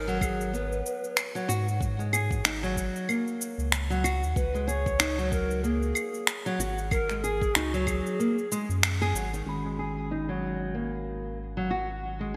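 Organic downtempo in G# minor at 94 BPM with a gentle 16th-note swing and a meditative mood, built on an airy, chiffy cedar flute melody with delay over up-front fingerpicked nylon-string guitar arpeggios, a round sine sub bass with sidechain pumping, a very quiet ringing quartz singing bowl, and layered electronic shaker, claves and finger snaps in gated reverb with a deep electronic kick that drops out at 8.8 seconds, before a mellow tine electric piano enters at 9.4 seconds as a filter sweep passes over the guitar, all set in a lush hall with bright 1980s-style digital production.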